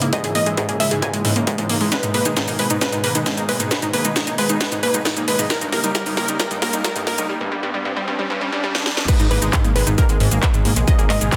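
A straight 4/4 pulse at 134 BPM drives this bittersweet, soaring uplifting trance passage in G# harmonic minor, moving through C#madd9, G#m and D#7, with a distorted, layered electronic kick and an up-front techno kit of cracking snare, metallic hats, handclaps, shaker and crash cymbal filling the build-up, a bright, punchy detuned sawtooth pluck with delay carrying the melody over a second ring-modulated pluck spinning low delayed arpeggios, a thick, warbling vintage pad holding chorused chords in the background above a fat analog bass, a very quiet riser running from 5.2 s until the drop at 9.1 s, and sidechain pumping breathing through the plucks, pad, bass, hats and cymbals inside a moderate room reverb and a dense, heavily limited master.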